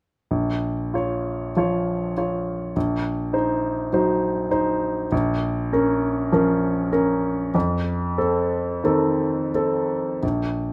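A romantic classical nocturne for solo piano in Bb minor, yearning and melancholic, unfolds at a slow, rubato 41-51 BPM in 4/4 as an intimate, up-front baby grand with a clear, natural tone and audible action noise moves from Bbm through Cm7b5/Bb and back to Bbm before reaching F7 at 7.5 s, all set in a moderate large-studio reverb and cut from a longer piece.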